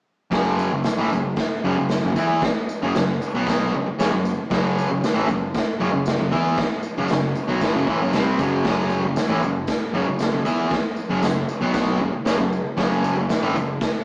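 Rowdy and raw, this garage rock clip, cut from a longer piece, drives along at 116 BPM in a straight 4/4, holding to a single section built on an F#5 chord. A double-tracked fuzz guitar sits up front with a bright, distorted, picked riff from F#2 to E4, while a fuzz-laden picked electric bass, overdriven and warm, stays in the background between F#1 and E2. The raw garage drum kit of kick, snare and hi-hat is up front too, its tight kick and medium-tuned snare carrying a saturated, gritty 12-bit sampler character with a rolled-off top. A jingly, close and dry tambourine joins at 0.6 seconds, low in the background. The band sounds as if playing live together in a wet stone room with a 1.1-second reverb tail, heard through a small speaker, and everything stops by 14.0 seconds.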